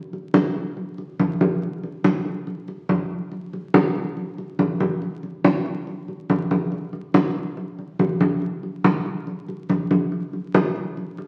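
The crackle of a very old 78 rpm record opens this short Latin fragment, and a lone conga part enters at 0.1 s and plays on until 11.3 s in a straight 4/4 feel. The medium-tuned acoustic congas ring out, struck with soft hands and sitting close, dry and up front, while the recording carries the wet reverb of a large studio. The mood is warm and nostalgic, with a new section beginning at 5.0 s.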